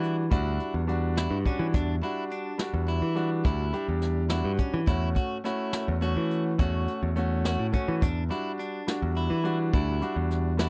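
Piano, guitar, bass and brushed drums start together in this brooding, intricate progressive instrumental, a short cut from a longer piece in 11/8 at 210 BPM in eighths, set in E dorian and moving from Em7 to F#m/E and back. A brilliant, polished grand piano carries the accompaniment up front, while a twangy, slightly broken-up electric guitar picks arpeggios alongside it, and a bright picked bass and a boomy-kicked brush kit sit close in the mix. The sound is dry and close, like a 1970s studio session, with little reverb.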